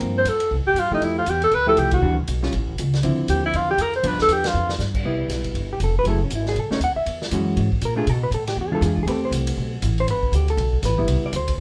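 A breathy alto saxophone with vibrato carries the melody in this swinging small-group jazz excerpt, playing from 0.2 to 4.7 seconds over a clean, fingered hollow-body jazz guitar, a woody, growly pizzicato upright bass and a vintage drum kit with dark cymbals and a punchy kick. The band hits an accent at 1.9 seconds and another just before a drum fill, after which the guitar, bass and drums carry on through a second section of extended jazz chords. A moderate small-room reverb surrounds the warm, live, one-room performance.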